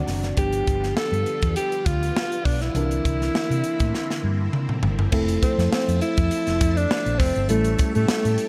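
A dark, polished production with light reverb and a small-room feel frames this glossy, breezy slice of 1980s jazz-funk pop, cut from a longer piece and moving at 101 BPM in 4/4 with a gentle sixteenth-note swing in F major. A worn, slightly out-of-tune tine electric piano with subtle chorus opens with a brief fill before settling into accompaniment, while a bright, swirling string machine, treated with ensemble chorus and phaser, holds slow-attack sawtooth chords in the background. A round, amped hollow-body electric bass anchors the low end, and a crisp fusion drum kit sits up front with a punchy kick, medium-tuned snare and dark cymbals, playing a fill from 3.9 to 5.1 seconds. From 0.4 seconds a breathy, intimate alto saxophone carries the melody with a soft attack and clear vibrato, its whispered jazz tone placed close to the listener. The harmony moves from G7 to C9, then shifts at 5.1 seconds into a second section on Fmaj7 before turning to A7.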